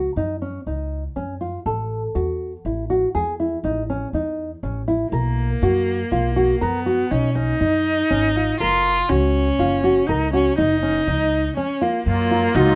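A close, detailed recording with light reverb presents a shimmering, playful contemporary chamber piece in 7/4 at 121 BPM, set in F# major. A dark, thumb-plucked nylon-string guitar plays arpeggios over woody pizzicato upright bass, both up front. A rich, bowed viola with smooth vibrato joins at 5.1 seconds as the harmony moves from F#5 through Bmaj7. After a brief break, a reedy musette accordion enters at 12.1 seconds with sustained chords on F#maj7 just before the excerpt ends.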